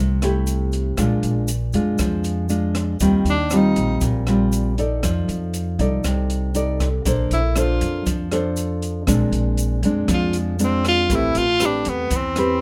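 A straight bossa nova groove at 119 BPM in 4/4 is set by a thumb-plucked classical nylon-string guitar and a woody pizzicato upright bass on steel strings, both up front, while a dark, smooth jazz kit with boomy kick, hi-hat and rim click and a grainy, bright egg shaker tucked in the background join at 0.2 seconds. The mood is sunny and sophisticated, moving through rich chords from a rootless Fmaj9 and Bb7 to Eb69, Bbmaj9 and Am9. A breathy subtone tenor saxophone with vibrato and scooped notes takes a present, clear jazz solo, offering a brief phrase at 3.3 seconds and returning at 7.3 seconds, all captured with close, detailed microphones and little reverb in this cut from a longer piece.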